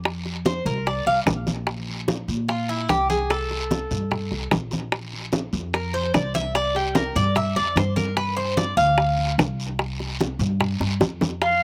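Latin music in the Cuban son and guajira vein, this short cut from a longer piece feels danceable and warm, with a straight 4/4 groove. The Cuban tres carries a mellow, picked solo of arpeggios across its double strings, metallic and partly octave-doubled, sitting up front with a slapback echo. A woody, thumpy upright bass played pizzicato anchors the low end. Low-tuned congas with a thick, damped skin and tight high-tuned bongos with slapback echo, both played with soft hands, join a raspy guiro to fill out the percussion. The chords move from F5 through C7b13, C5, Bbsus2 and G5, and a drum fill arrives at 10.8 seconds. At 11.4 seconds a bright, reedy silver concert flute enters on a single F5 with vibrato and a soft attack. The outdoor recording is dry, with little reverb or room sound.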